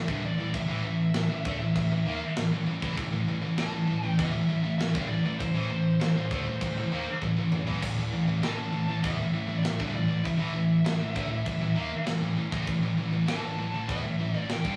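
A rough rehearsal-room sound with moderate studio reverb frames this dark, aggressive heavy metal passage, cut from a longer piece, at 99 BPM in 4/4, where a dark-toned high-gain lead guitar carries the melody over two bright, distorted rhythm guitars in the background and a very quiet, scooped, double-tracked guitar picking the riff, a growling overdriven picked bass beneath them, and a tight, gritty metal drum kit with a rolled-off top, a tight kick, a medium-tuned snare, toms and china, crash and splash cymbals that breaks into a fill at 7.2 seconds.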